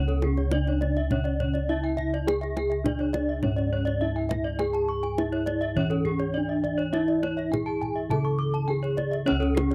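This Balinese gamelan piece in C# pelog moves at 103 BPM in a straight 4/4, its mood brilliant and shimmering, and the 9.7-second passage is cut from a longer work. A bronze metallophone carries the melody between C#4 and A4-20c, its wooden-mallet tone dark and smooth, with a tape echo trailing its ringing strokes. Two more bronze metallophones weave arpeggios higher up, reaching D6+20c: one, struck with a horn mallet, sounds bright and airy, while the other rings with a wooden mallet, and the paired tuning across the metallophones produces shimmering beats. Bossed gongs played with padded beaters hold the bass from C#2, round, mellow and soft yet sitting up front, and a tight, acoustic kendang adds percussion from 0.1 seconds. The recording is dry and close, in a 1970s studio style with little reverb.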